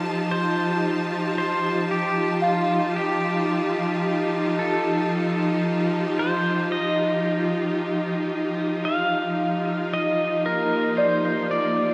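Awash in a long plate reverb and heavy echo, this serene ambient excerpt drifts at 56 BPM in F mixolydian, moving from F7 to Eb/F at 6.7 seconds. A lush, bowed string section sits up front, holding sustained chords with rich vibrato, while a twangy, clean pedal steel guitar carries the melody through analog delay, its slide and volume swells giving it a warm glow. Beneath them, very quiet muted synth keys play soft, decaying arpeggios with a dark, chorused tone.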